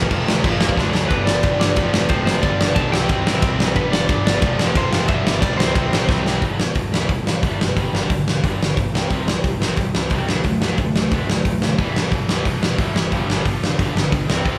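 Punk rock with a rebellious, energetic push, cut from a longer piece and played live in one room with light reverb, where an up-front, mid-forward big rock drum kit with a tight kick and rolled-off top powers picked riffs from a bright cranked stack guitar, a bright, double-tracked tight distorted guitar that drops out between 6.4 and 11.8 seconds, and a very quiet, warm overdriven semi-hollow guitar, all over a growly fuzz electric bass, while a compressed, slightly broken-up lead guitar carries the melody until 6.2 seconds.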